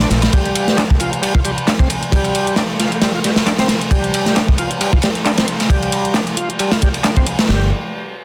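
This breakbeat cut has a swaggering, raw attitude, riding a lightly swung sixteenth-note groove over a single G7 chord with its third omitted. A bright, shouting tonewheel organ carries the riff throughout, lightly overdriven, with chorus vibrato, audible key click, a slow rotary speaker, a low-pass filter and digital delay. Up front, a crunchy acoustic breakbeat kit drives the track with a tight kick, a medium-tuned snare and dark ride cymbal, its saturated, gritty tone rolled off at the top. A layered electronic house kit sits lower in the mix, adding handclaps and bright hi-hats. A punchy, direct fingered electric bass appears only briefly, at the very start and again from 7.5 seconds, as the chord drops away near the close of this short excerpt. The dense, heavily limited master has a light reverb and small-room ambience.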